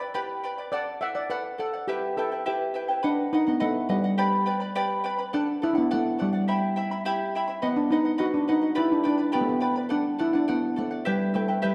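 A dark, reverberant recital-hall sound frames this melancholic yet festive Andean folk passage in 2/4, cut from a longer piece, where an up-front, metallic steel pan played with medium rubber sticks carries the melody in a boxy small-room tone, while an equally forward, bright, fingerpicked charango with shimmering doubled strings accompanies it through a repeating cycle of G, D, Em and B.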